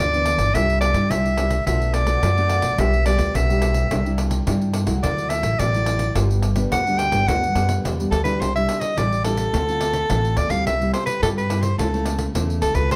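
An edgy, close-miked soprano saxophone leads this festive, lively samba and choro fragment, playing a jazz-style solo with light vibrato through the opening 8.4 seconds before the harmony shifts. Beneath it, a growly, woody upright bass sits up front with pizzicato lines, while a thumb-plucked classical nylon-string guitar supplies warm accompaniment and a jingly, saturated pandeiro adds hard-handed percussion. The ensemble sounds in a large studio with a moderate reverb, and the passage is cut from a longer piece.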